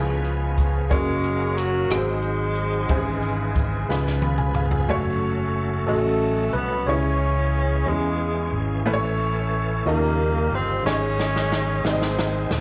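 Slow gospel in a straight 6/8, solemn and fervent, heard as a live club performance coming through the venue's PA. A brilliant, woody upright piano carries the accompaniment with audible action noise, a slightly detuned edge and long sustain. A punchy, up-front fingered electric bass anchors the low end, while a shouting, lightly overdriven tonewheel organ holds sustained chords in the background through a fast rotary speaker and chorus vibrato. A worn, slightly out-of-tune tine electric piano sketches the melody quietly behind, and from 0.9 seconds a forceful, vintage tenor saxophone with jazz-style vibrato takes the lead, both carrying a slapback echo that also touches the piano. An airy, polished big-band drum kit with a medium-tuned snare and punchy kick plays until 4.9 seconds, closing that stretch with a fill alongside a piano fill, then drops out before returning at 10.9 seconds with another fill to end the passage.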